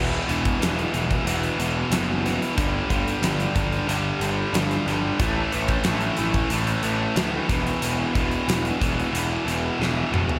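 A straight, steady four-count groove drives this brooding, angsty slice of quiet-loud alternative rock, cut from a longer piece. A huge arena drum kit enters at 0.3 seconds with hi-hat, a punchy kick, a fat snare and toms, sitting up front in a big room, and a drum fill closes the passage at 9.8 seconds. Three picked electric guitars share the low riff: a high-gain distorted guitar with a bright edge, a tight distorted guitar in the background, and a warm, crunchy overdriven guitar, double-tracked and also set back in the mix. Underneath, a fuzz-soaked picked electric bass growls, its direct-and-amped tone pushed through overdrive. The riff moves through E5, G5 and A5 power chords before returning to E5, all under a light reverb.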